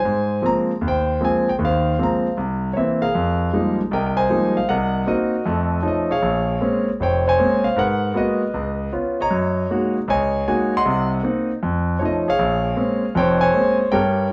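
Solo jazz excerpt at a swung 156 BPM in 4/4, sophisticated and warm, where a clear concert grand piano with audible action noise, deep bass and long sustain plays alone from 0.0 to 14.3 seconds, ranging from F1 to C6 through rich extended chords like Ab69, Fm11, Gb69 and F7alt as the key shifts from Ab major to F minor at 3.1 seconds, all heard from further back in a wet club reverb.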